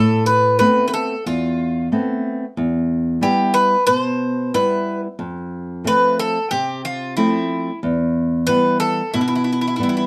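Set in a wet, small-room reverb, this brooding 10-second excerpt of Greek folk at 91 BPM in E phrygian has an up-front picked bouzouki carrying the melody with metallic double strings, partly octave-doubled, over a warm, fingerpicked flamenco guitar accompaniment, moving through Amadd9, Em, F and back to Em.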